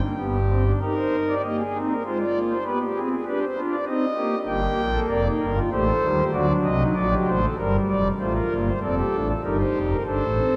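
A solo pipe organ on its foundation stops, thick and up front with a romantic voicing, carries this elegant, stately fragment of a baroque-style four-part fugue in C minor, moving at 97 BPM in a straight 3/4 and tuned to A4 = 437 Hz. Spanning F1 to G5, the organ works through a harmony that passes from Cm/Eb through Dm7b5/Ab, G7/B and Gm. At 8.2 seconds it turns toward Bbmaj7 and Eb/G before settling on a rootless F69 chord. A wet cathedral reverb with a 4.8-second decay surrounds the organ in a vast, resonant space.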